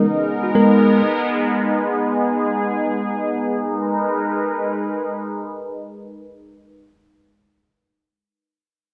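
A bell-like tine electric piano and a sweeping resonant pad sound together at the outset on a G# minor add-nine chord, in free time and tuned slightly low to A4 = 436 Hz. The electric piano is bright, clean and direct, offering a short accompanying figure through a low-pass filter before it stops at 1.0 seconds. The pad carries the sustained chords, an evolving, airy sawtooth layer with detuned voices, a noise component, a slow attack and a long release, placed up front with chorus and its own low-pass filter. A filter sweep shapes the opening until 3.6 seconds, after which the pad holds on alone until it ends at 6.6 seconds. This pop fragment, cut from a longer piece, feels confident and energetic, set in a moderate recital-hall reverb within a dark production.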